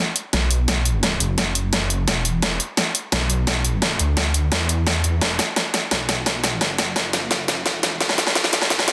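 An up-front, overdriven dubstep drum kit with a huge snare and bright hats drives this dark, futuristic piece of technical drum and bass at 172 BPM, building up as one long drum fill from 0.2 seconds, while a snarling, growling detuned saw bass with tube saturation and sidechain pumping churns between E1 and E2 and a very quiet, knocking electronic kick sits beneath, set in light reverb with a dense, heavily limited modern master.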